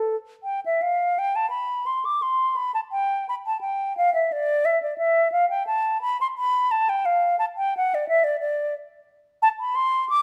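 Classical baroque-style fantasia for unaccompanied flute in a grave, introspective mood, where a pure, up-front concert flute with soft attacks and expressive vibrato unfolds a rubato line in triple metre spanning A4 to D6, set in a moderate recital-hall reverb for this brief 10.2-second excerpt of a longer piece.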